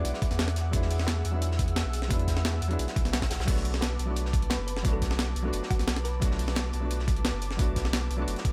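Rolling and dreamy, this short liquid drum and bass excerpt moves at 175 BPM in B dorian over E9 and Bm7 chords, with a deep, thick saturated sub bass up front beneath a thumpy, overdriven electronic kick that enters at 0.2 seconds, a gritty sampler-style breakbeat kit with crash, hats and snare, and a darker, high-pass-filtered breakbeat kit tucked in the background. A soft, felt-muted upright piano with audible action noise and tape echo carries the accompaniment, while an airy, breathy pad with chorus holds sustained chords above it. A round, tine-like synth pluck with chorus and delay sits in the background, playing its melody briefly at the start and again from 4.5 to 6.4 seconds, all in a dry, close-sounding mix.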